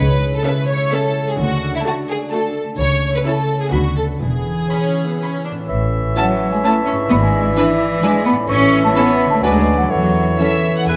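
A harp's ringing arpeggios open this playful, whimsical film cue at 0.0 seconds, joined at once by a sul tasto string bed of violins on a second line, dark cellos carrying the bass and soft-edged double basses beneath them. Moving at 128 BPM in a straight 3/4 in A major, the music takes on a magical lilt as a floating violin melody and a background viola accompaniment arrive moments later, both bowed sul tasto in a studio. At 5.7 seconds the cue shifts into a new section, where a clear oboe and a shadowy clarinet add woodwind lines and a vintage-toned bassoon supports them. At 6.2 seconds a bell-like, slightly out-of-tune celesta with soft felt hammers takes up the melody, joined in the same register by a distant, wood-toned baroque flute, while a very quiet French horn section holds sustained chords. The harmony travels from C#m through D and Bm/D to E before settling on A, and the whole ensemble sits in a generous recital hall reverb that lends it a soft glow.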